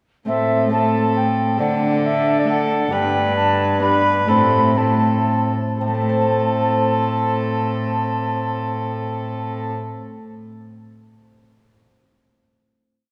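Classical renaissance-style consort dance in 3/4 and A minor, solemn and rustic, moving at 114-137 BPM and slowing from 2.3 s into a sustained final chord at 5.8 s, with a pure, wooden baroque flute carrying the expressive vibrato melody over a bowed gut-string viola and a mellow, smooth bassoon that shape chords in the rhythm of the tune, a nasal, reedy cello holding the sustained bass, and a ringing fingerpicked Celtic harp rolling chords in the background, all set in a wet church reverb.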